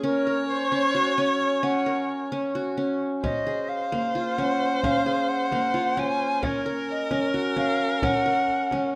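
Contemporary chamber music in a restless, pensive 7/8 at 263 eighth-note beats per minute in Bb minor, where a pure, distant silver concert flute carries the melody over a smooth, bowed viola second line and bright-edged, plectrum-plucked qanun arpeggios up front, joined at 3.2 seconds by a deep, dry frame drum played with soft hands, all in light reverb through close, detailed microphones as the harmony moves from Gb to Bbm7 to a rootless Ebm7.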